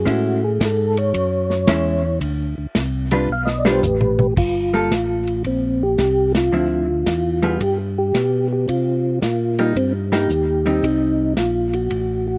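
A soft, flute-like percussive tonewheel organ carries the melody in this smoky, soulful soul jazz organ trio, its slow rotary speaker and chorus vibrato giving a gentle shimmer over a swung 4/4 groove. A fuller, lightly overdriven tonewheel organ supplies the bass with audible key click, while a dark, clean hollow-body electric guitar with slapback echo comps beneath and a dry soul drum kit with a tight kick and dark cymbals keeps time. The drums play a fill at 3.3 seconds before the band hits accents at 6.3 and 10.0 seconds in this close, roomless recording, which is cut from a longer piece.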